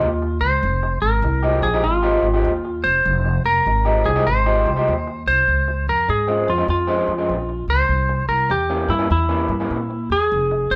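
A swung 4/4 shuffle at 99 BPM drives this soulful, mournful electric blues in F minor, where a clean, scooped lap steel carries the slide melody over a twangy, slightly broken-up lo-fi guitar riff from a small old amp and a woody, dark pizzicato upright bass, all three up front in a lightly reverberant live room as the harmony moves from Fm9 to Dbmaj7 at 5.5 seconds and C7b9 at 7.9 seconds.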